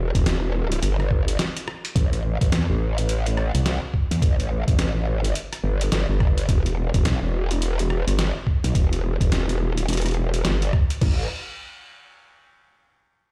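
A growling, distorted bass sits up front in this gritty, swaggering glitch hop excerpt in A minor, moving between E1 and E2 with a saturated, wobbling, formant-filtered tone thickened by chorus and tube saturation. It runs from the start until 11.3 seconds, with a fast attack and sustained notes at a steady 106 BPM in 4/4, its sixteenths swung at 61%. Beneath it, a pitched-down, compressed electronic kick delivers a thumpy, tape-warm punch, while a sampler-style boom bap kit adds crash cymbal, hi-hat, rim click and a medium-tuned snare, sitting lower in the mix. Both drum parts carry studio reverb and a gritty, sampled character. The piece opens on a drop with a brief break at 1.4 seconds before settling into its main groove from 2.0 seconds, and the sound suggests a big system playing in a bare, reverberant room.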